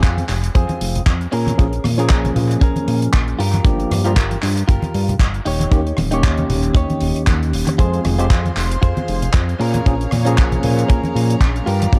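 This excerpt of sleek, sensual nu-disco opens at 116 BPM in 4/4 with a lightly swung sixteenth feel. A tight, up-front acoustic kick, a dry, mid-forward 70s drum kit of handclaps, hi-hat and rim click, a fat analog bass and a bright, clean electric guitar riff recorded direct all start together. Low-tuned congas with a thick skin and soft hands sit in the background. The bass blends sawtooth, square and triangle tones with detuning, ring modulation and a filter sweep for a mellow, sustained low end, while the picked guitar is compressed and scooped, dressed in subtle chorus and analog delay, and the drum kit also carries analog delay. At 1.6 seconds an overdriven tine electric piano enters through a combo amp, barky and driven, with sidechain pumping and its own analog delay. At 7.8 seconds a clear chamber string section, set back in the mix, adds bowed sustained chords with light vibrato, an earthy tone, 12-bit sampler grit and sidechain pumping, over chords moving through Fm, Bbm7, Gm7 and Eb7 in an echo-heavy mix with light reverb and small room ambience.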